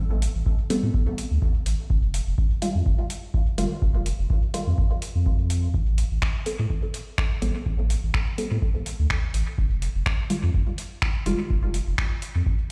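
A swung dub techno groove with a hypnotic, deep mood rides on a dry, up-front electronic kick, a booming analog drum machine of finger snaps and metallic hi-hats sent into dub echo, a round sine sub bass pumping under sidechain, and muted, detuned sawtooth chord stabs with a filter pluck, phaser and echo moving from Am9 to Fm9 and back before the harmony drops out at 9.6 seconds, all heard through a bare stone room on a big sound system in this cut from a longer piece.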